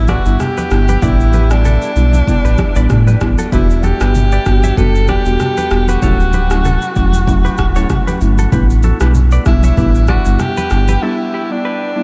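Lightly reverberant and studio-polished, this breezy, joyful afrobeats excerpt from a longer piece has a breathy, whispered tenor saxophone singing a smooth, intimate melody through tape echo over woody, rustic marimba accompaniment, a deep, mellow sub bass with octave up front, a bright, twangy clean electric guitar riff touched with subtle chorus and tape echo, and a deep house kit of deep kick, rim click and shaker padded by very quiet, soft-handed congas, until bass, drums and congas drop out at 11.0 seconds for a brief break.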